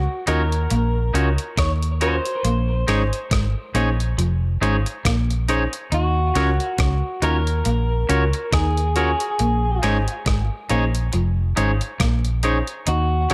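A crisp 8-bit drum machine with a thumpy kick, rim click and hi-hat, carrying tape echo, swings its sixteenths at a slow 69 BPM in this bittersweet, longing lovers rock reggae cut from a longer piece, joining at 0.3 seconds beneath a round, foam-muted fingered bass and a lo-fi, compressed lead guitar with tape echo that both start at 0.0, while a barky tine electric piano, bright clean guitar stabs and a slightly broken-up background guitar riff bathed in lush chorus fill out the Ebm7 to Bbm11 changes under light digital reverb.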